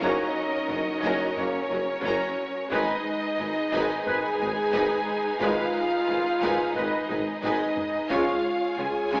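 Triumphant and adventurous, this cinematic, epic orchestral film score moves in a steady, straight four. A distant, lush violin section carries the melody with smooth vibrato, while a second violin line and the violas sit in the background as warm and rich bowed support. A dark, roomy French horn section and a focused string section hold sustained chords, joined by a very quiet, bright trombone section that drops out at 8.4 seconds, as dark trumpet stabs with a smooth top punctuate from behind. The bass rests on rich cellos and double basses alongside a soft-attacked tuba, while a close, dry taiko ensemble struck with heavy sticks adds a fill from 7.1 seconds before the harmony settles on Db at 8.1 seconds. Bathed in a wet scoring-stage reverb yet filtered through an AM radio sound, the piece plays as a brief cut from a longer work.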